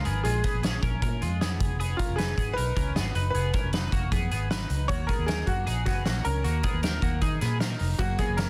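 Restless and wistful, this short cut of jangly indie pop sets a slightly detuned, woody upright piano carrying the slapback-echoed melody over chiming twelve-string electric guitar arpeggios thickened with analog chorus, a round, foam-muted electric bass and a loose, roomy drum kit with a fat snare and punchy kick, while a full-bodied picked acoustic guitar joins only at 8.0 seconds as the chords move from Bbm7 and Fm7b5 to Gb in a dry, dense, heavily limited mix.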